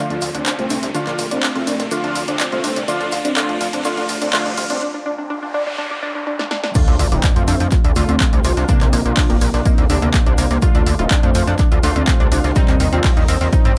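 A straight 4/4 pulse drives this dramatic, cinematic melodic techno piece, cut from a longer track: an overdriven techno kit with a punchy snare, claps, hi-hats and crash sits over a very quiet, natural acoustic kit of hi-hat, shaker and fat snare, while a gritty, aggressive sawtooth bass pumps against the sidechain. Tight, driving sequenced arpeggios and bright, wave-folded brass stabs play under filter sweeps as a riser builds, and a noise sweep fills a short break from 4.8 s before a drum fill. At 6.8 s the drop lands with a tape-toned, up-front electronic kick and an impact, while a dark, round synth brass melody with vibrato and dub echo hovers in the background of a springy, echo-heavy small-room mix.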